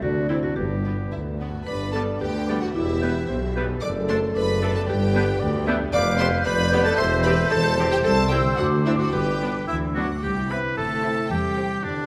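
A playful, whimsical cinematic film cue in G major at 112 BPM in a straight 2/4, its magical, quirky mood carried by a woody, buzzing marimba struck with hard mallets and a clear studio violin section sharing the melody, while a clear oboe, an airy, hollow flute section, a second violin line and a mellow clarinet entering at 1.7 seconds weave supporting lines. Beneath them a mellow French horn section holds chords, a bright viola section fills in from the background, a very quiet concert harp rings out fingerpicked arpeggios, and the bass sits in a bowed double bass section, a lush cello section and a soft, roomy tuba that drops out at 10.1 seconds. The orchestra sits in a moderate scoring-stage reverb, with the harmony moving from D7 to G, then through Em and C before settling on C in the closing bars of this excerpt cut from a longer piece.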